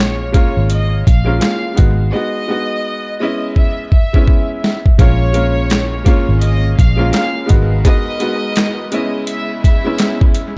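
A swung boom-bap groove at 84 BPM in 4/4 anchors this reflective, gritty hip-hop fragment in Bb phrygian, with a compressed, pitched-down sampler-style kit sitting up front: thumpy kick, medium-tuned snare, hi-hat and handclaps, re-recorded in a large room, with a drum fill from 3.6 to 5.0 seconds. Beneath it, a vintage muted fingered electric bass, dark, round and punchy, holds the low register until it drops out at 7.8 seconds. A clear, woody upright piano with short sustain and a cassette-tape coloring supplies the accompaniment across the chords Bbm7, Abm7 and Dbm7. Above it, a chamber violin section carries the melody with light vibrato and a biting, earthy edge, trailed by analog delay. From 5.0 seconds a lush studio string section adds sustained, even chords in the background, and the whole mix is bathed in echo-heavy studio reverb, cut from a longer piece.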